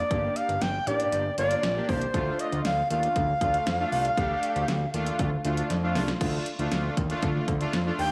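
An airy, reedy shakuhachi melody with chiff and vibrato, set in tape echo, opens this wistful 118 BPM synth-pop fragment over a thick, detuned analog bass, joined at 0.1 s by bold, chorused sawtooth synth brass with a filter sweep and a punchy, overdriven pop drum kit with metallic hats, moving from Gm to Dm in a moderate concert-hall reverb, with a drum fill at 5.7 s leading into a new section at 6.2 s.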